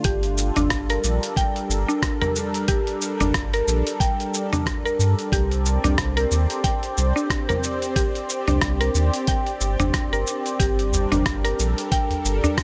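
Meditative and hypnotic, this organic downtempo excerpt in G minor moves at 91 BPM with a swung 16th-note feel. A smooth, detuned sawtooth pad with chorus and sidechain pumping sustains chords from Gm7 to C7(no3), while a woody FM mallet-like pluck spins mellow arpeggios through chorus and digital delay. A deep, round sine sub bass pumps up front beneath them. A gritty, compressed sampler-style kit of hi-hat, rim click, shaker and toms pairs with a thumpy electronic kick, both re-recorded in a small room. A small acoustic udu slips in at 10.9 s, and the whole scene sits in light reverb.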